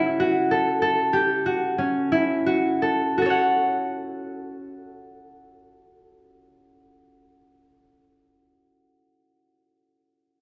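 A lone concert harp, ringing and up front, fingerpicks urgent, restless arpeggios between C#4 and F#5 in this brief contemporary instrumental excerpt in F# minor and 7/8 at 167-199 BPM (eighths), slowing over the opening 3.2 seconds on C#madd11 before settling onto F#m, all bathed in a wet recital hall reverb.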